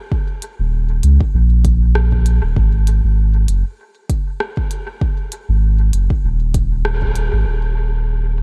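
A digital ambience surrounds this short ambient dub fragment, cut from a longer piece, giving it a spacious, meditative air. At 98 BPM in 4/4 with a light swing on the sixteenths, an up-front electronic kick with a deep, produced thump arrives almost at once. A drum kit of crisp hi-hats and rim clicks follows at 0.4 seconds, with its snare and hats darkened by low-pass filtering and trailed by dub echo. A round, sine-like sub bass enters at 0.6 seconds, moving between Eb1 and Db2 with a fast attack and mellow, sustained notes, sitting prominently at the front of the mix. Near the close, the band lands a shared accent around 6.8 seconds, and soon after the kick falls away while the kit and bass carry on briefly.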